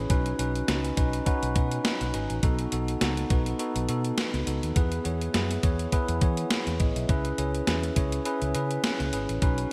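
1980s-style pop in C# minor at 103 BPM, this brief cut from a longer piece feels nostalgic yet urgent, with a light sixteenth-note swing over chords moving from Badd9 through B7 and E to C#m7. A bell-like tine electric piano sits up front with a clean, direct tone and plays a fill from 0.7 to 2.4 seconds, while a dark, round, foam-muted fingered bass supplies punchy low end. A thumpy, sampler-style drum machine with gated reverb drives the hi-hat, kick and medium-tuned snare, all inside a lush hall and a bright digital production.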